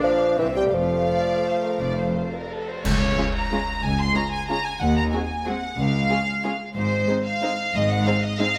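In a rubato three-four lilt, this sweeping, elegant orchestral ballroom waltz fragment floats a pure, distant violin melody up front over a dark, smooth-topped second violin line, a brief classical-style solo bassoon that falls away by 2.5 s, intimate violas, and warm cellos and double basses entering at 0.4 s, while a cymbal swell, clash cymbals and concert bass drum enter at 0.7 s and help mark an ensemble accent at 2.8 s, set in a moderate scoring-stage reverb.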